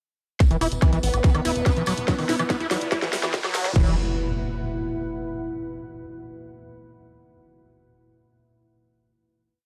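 Psychedelic trance at 143 BPM in E minor, driving and hypnotic, built as a short build-up from 0.4 s that resolves into a final chord at 3.8 s. An up-front four-on-the-floor electronic kick drives a programmed kit of cracking snare, closed and open hats, woodblock and crash with a drum fill, while a jingly hand-played tambourine sits in the background and a tight, saturated sequencer bass rolls in sixteenths beneath a squelchy, screaming distorted acid line whose resonant filter sweeps through the build. A pulsing gated texture holds a bright high note, a very quiet nasal vowel-sweep wobble bass joins, a riser and impact arrive at 1.4 s, and a deep, moody ambient pad with slowly shifting chords enters at 1.6 s, all in a dark production with light reverb.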